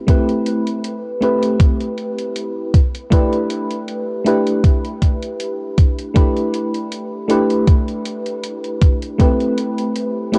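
Vaporwave in G major at 79 BPM with a light 16th-note swing, this faded, woozy snippet from a longer piece drifts from Am9 to G69 at 2.7 s and back to Am9. A mellow, round FM electric piano sits up front, its dark, warbling tone carrying tremolo, lush chorus and analog delay. A thumpy, overdriven kick drum with sampler grit anchors the groove until 9.4 s beneath a faint, gritty electronic hi-hat, all wrapped in light reverb and cassette-tape haze.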